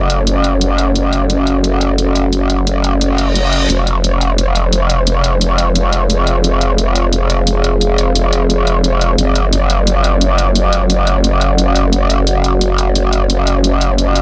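A dry, up-front mix opens this futuristic, dark excerpt of technical drum and bass at 175 BPM, where a saturated, growling bass with a formant-filtered wobble sits loudest over a deep, detuned sawtooth pad that holds moody sustained chords, moving from Gb minor to F minor at 3.7 seconds and back at 9.2 seconds. A layered electronic hi-hat carries the beat from the start in a small room, and a reverse cymbal sweeps in at 3.1 seconds, with another brief swell at the very close.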